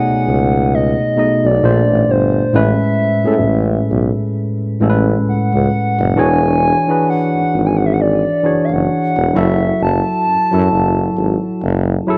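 A hollow, woody clarinet-like synth lead with chorus and tape echo carries the melody over a worn, slightly out-of-tune tine electric piano heard through built-in speakers, joined at 0.1 seconds by a clear tuba bass with light vibrato, in this moody, sensual contemporary R&B excerpt at 66 BPM with a swung sixteenth feel, moving from B13 through A#maj9 and Amaj9 to E13 and F#m7 in a small room with light reverb.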